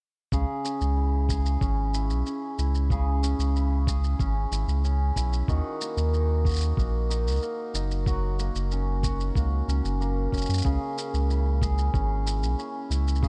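Light reverb gives this short folktronica excerpt a close, intimate sound, with a deep, round sub bass sitting up front. It moves at 93 BPM in a straight 4/4 in C# dorian, tuned to A4 = 439 Hz, and the mood is delicate. A mellow acoustic hammered dulcimer plays shimmering, ringing arpeggios between C#3 and G#4, its notes carried by delay. Beneath it, the sine bass ranges from F#1 to F#2 with a fast attack and sustained tone. A compressed, pitched-down electronic kick gives a muffled, thumpy pulse, and a quiet sampler-style shaker of the same treatment sounds alongside it, both set in a small room ambience. All four parts play together from 0.3 to 13.3 seconds over chords moving from C#m to D#m, then F#, and back to C#m.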